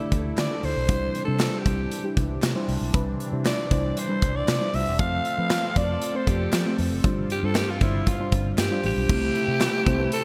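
1980s-style pop with a romantic, nostalgic glow, built on a big rock drum kit with gated reverb, a round, foam-muted electric bass, a mellow FM electric piano with chorus and phaser, and a swirling phased analog pad tucked in the background. A raspy, gritty alto saxophone carries the melody up front as a solo with vibrato, scooped notes and delay, entering at 0.4 seconds, while very quiet, distant group handclaps add crisp texture. The bright digital production sits in a lush hall reverb, and the chords move from Dsus2 through Cadd9, F and G7sus4 before settling on C6 at 9.1 seconds in this short excerpt.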